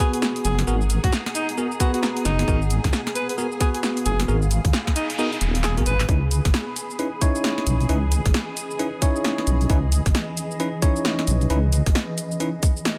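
UK garage in a two-step style at 133 BPM, this late-night, skippy cut from a longer piece moves from G#m9 to C#m9 at 6.1 seconds, with a swung, tight overdriven kick and a dry, punchy analog drum machine of snare, handclaps, hi-hat and cabasa riding over a deep, wobbling, detuned bass. A breathy, whispered alto saxophone with light vibrato carries an intimate melody until 6.1 seconds, while a bell-like tine electric piano plays bright stabs through diffuse ambient delay, a silky string machine holds phased, pumping chords in the background, and a granular cloud pad drifts and blurs underneath. A background noise sweep and a drum fill lead into the second half as the kick drops out from 5.2 to 6.1 seconds, after which a filter sweep moves across the electric piano.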